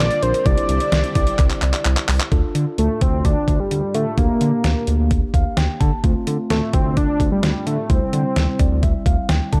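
An overdriven, detuned 8-bit drum machine sits up front in this nocturnal, melancholic synth-pop cut from a longer piece, its thumpy kick, medium-tuned snare, hi-hat and handclaps driving a straight 4/4 at 129 BPM in D minor. A smooth sawtooth-and-square synth bass with vibrato anchors the low end, while a thick, bold unison lead with delay carries the melody until 8.8 seconds. A mellow tine electric piano plays clean, direct accompaniment throughout and adds short fills later on. In the opening section a lush vintage string machine holds very quiet sustained chords behind a drum fill, dropping out at 2.3 seconds as the second section moves through Dm, Gm/D, F/D and C/D over a D pedal. Light reverb and a dark, warm production give the whole a late-night cast.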